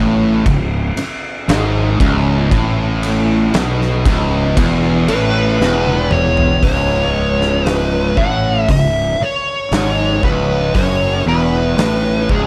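Hypnotic and brooding, this stoner and doom metal excerpt crawls at 58 BPM in 4/4 with a straight feel, resting on a C# minor chord throughout. A double-tracked fuzz guitar carries the riff low in its register, up front and compressed, while a growly, overdriven fingered bass adds weight beneath it with a punchy, amped tone. An oversized, low-tuned acoustic drum kit joins at 0.5 seconds, its fat snare, punchy kick and dark cymbals sounding saturated and gritty in a big, pumping room, with hi-hat, ride and toms also in play. At 5.1 seconds a dark fuzz lead guitar enters with a melody on top, colored by wah and slapback echo, and a drum fill from 5.6 to 6.6 seconds leads into the second section. The production is dark and warm, with light reverb around the parts.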